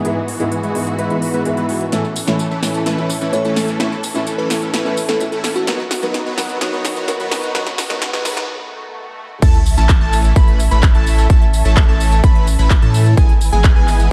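Triumphant and anthemic, this festival progressive house excerpt at 128 BPM in A lydian builds for 9.4 seconds, with huge, detuned supersaw chords pumping under a filter sweep over a boxy grand piano, a lush bowed string section in the background, a punchy big-room drum kit with crisp hats and a drum fill, a brief sparkling bell-like FM electric piano melody, and a very quiet riser, swell and sub drop, before the drop lands with a thick saturated sub bass, an up-front electronic kick and catchy plucky unison lead arpeggios, all set in light reverb within a dark production.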